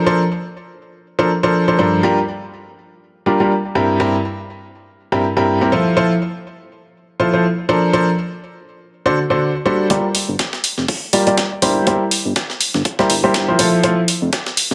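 Piano house at 122 BPM in G dorian, soulful and energetic, with a 16th-note swing; this cut from a longer piece opens with a clear, worn grand piano riff up front, pumping against the sidechain through a low-pass filter and delay over chords like Bbmaj9/F, Gm7 and C7/G. At 9.9 seconds a build-up begins as a fat, detuned, wave-folded analog bass enters alongside a gritty, pitched-up breakbeat kit with a medium-tuned snare, a punchy kick sitting in the background, and a tape-warm electronic hi-hat arriving up front at 10.1 seconds. The piano drops out at 14.0 seconds, leaving the rhythm section under a light reverb.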